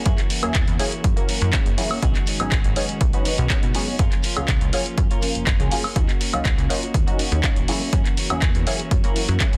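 Funky and joyful, this short cut of filtered disco house moves in a straight 4/4 groove, drawn from a longer piece. A punchy electronic kick sits up front, joined by an analog drum machine playing handclaps, hi-hat and woodblock, with sidechain pumping on the hats and percussion, while maracas and a group handclap linger barely audible in the background. A plucky analog bass with a fast attack and decaying sawtooth and square-wave tones drives the low end, and a nasal, detuned polysynth comps through chorus, phaser and a cassette-tape haze. A bright, twangy twelve-string electric guitar plays a clean, picked riff, and the bass, polysynth and guitar all pump under sidechain compression and sit behind a low-pass filter. The chords move from F#7 to B69, F#maj7 and D#m7 before returning to F#7 at 7.7 seconds, all in a dry, dense and heavily limited modern mix.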